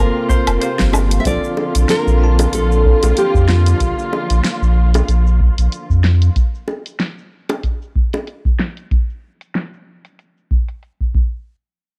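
Sunset chillout in Bb major at 94 BPM, with a blissful, swung 4/4 feel, this excerpt moves from Gm11 to Bbmaj7 as a fingerpicked nylon-string guitar with audible finger squeak and analog delay carries the melody over a bell-like tine electric piano, veiled con sordino strings roughened by 12-bit sampler grit, a round sine sub bass and a brief, slightly broken-up electric guitar arpeggio, while an up-front deep electronic kick, a deep house kit with a fat snare and a filter sweep from 1.3 s, and tight high-tuned bongos carry on after the strings and bass stop at 6.3 s, the whole captured with a dry, gritty hardware character.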